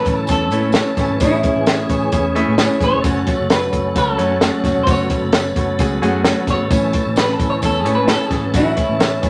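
A clean, picked semi-hollow electric guitar carries the melody through spring reverb from the start, over an intimate grand piano with audible action noise, a full tonewheel organ holding sustained chords through a slow rotary speaker with light overdrive and chorus vibrato, and a jingly tambourine in the background. At 0.1 seconds a round, foam-muted electric bass and an up-front compact cocktail drum kit with a high-tuned snare, punchy kick and rolled-off top join, along with very quiet, hard-handed congas. This joyful, uptempo 1960s-style soul excerpt moves from A to F#m and back to A in a small, wet room.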